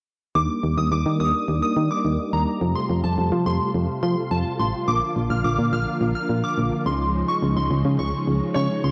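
Pop at 106 BPM in a nostalgic, upbeat mood, this excerpt pairs a punchy, round FM bass with a warbling, organ-like string machine under a filter sweep and a shimmering, detuned FM bell carrying the second line through chorus, phaser and analog delay, over chords moving from Ebmaj7 through Fadd9, Bb and Dbadd9, before a clear concert grand piano touches a single Db5 melody note at 8.5 seconds, all washed in wet spring reverb with the softened character of a home cassette recording.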